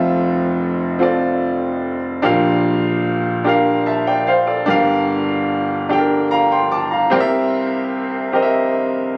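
Soulful and reverent, this short gospel fragment is cut from a longer piece and unfolds in an unhurried 6/8 pulse. A lone concert grand piano carries everything from 0.0 to 9.2 seconds, ranging from a deep bass around F1 up to D6. Its brilliant tone sits up front, while the low register adds a rich, grounded weight beneath the hymn-like harmony. The chords move from Fmaj7 to Bb6, then Gm7, and settle on C7, leaving the phrase hanging in expectation. A light reverb and the ambience of a club room surround the instrument, and the phone recording rolls off the highest treble, softening the sheen slightly, with the piano tuned a touch below standard pitch at A4 = 439 Hz.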